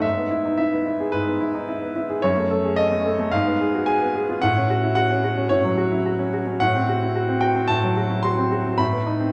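Passionate and stormy, this excerpt of a virtuoso classical piano study moves at 110 BPM in 4/4 with a free, rubato feel. A clear, natural-sounding baby grand plays alone from F#2 to C6, its long sustain sitting up front through a run of chords from E/G# and F#m to a closing B7/A. A wet recital hall reverb of about 1.4 seconds surrounds it, heard from further back in the room, and the instrument is tuned to A4 = 439 Hz.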